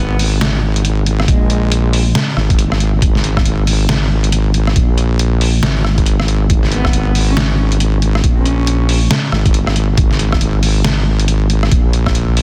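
Dark and heavy, this deep dubstep excerpt rides a half-time swing as a saturated, up-front wobble bass with chorus underpins gritty, pitched-down sampler-style drums of hi-hat, rim click and snare, a thumpy electronic kick arriving at 1.3 seconds, and a warm, intimate bowed cello with light vibrato and dub echo drifting in the background at the start and again from 6.7 seconds.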